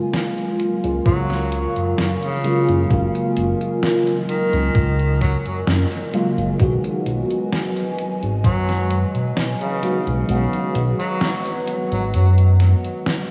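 A dreamy, cassette-tinged mix soaked in a long hall reverb opens this faded vaporwave fragment, cut from a longer piece and moving at a slow 65 BPM in straight 4/4 in F# major. A warbling, lo-fi pad of detuned square and triangle tones with a sub octave holds sustained chords beneath an FM electric piano with a soft pad layer, its mellow tone coloured by phaser, analog chorus and analog delay. A glossy, dark chorused synth bass sits up front with pulse-width movement and a moving notch filter. An overdriven, sampler-style drum machine supplies hi-hat and a medium-tuned snare alongside a thumpy electronic kick, which drops out at 10.3 seconds. Over this a breathy tenor saxophone carries the melody in a whispered, intimate voice with light vibrato and tape echo, while the harmony shifts from F#maj9 to B6 at 6.6 seconds.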